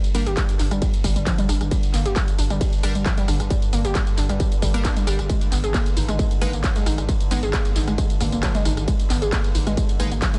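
Driving peak-time techno at 134 BPM in G phrygian, a relentless excerpt cut from a longer piece, moving from G minor to an Ab power chord at 5.3 seconds. A distorted, up-front kick enters at 0.4 seconds over a kit of handclaps, hi-hat, ride, rim click and tambourine re-recorded in a large room, while a round sine sub bass with overdrive and a low-pass filter pumps beneath. A warbling, lo-fi square-and-saw pluck riff with tape grit, chorus and delay carries the hook, backed by crisp ring-modulated wavetable chord stabs and a dark, slow-attack sawtooth pad drone sitting in the background.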